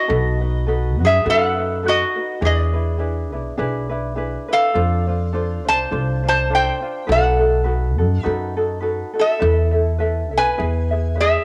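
A bright, nasal metal-body resonator slide guitar played with fingerpicks carries the melody up front in this dreamy, sunny Hawaiian swing piece at 103 BPM, over a light, thumb-plucked ukulele with a cassette-tape tint and a woody, thumpy pizzicato upright bass on gut strings, all in a small room on a home cassette recording.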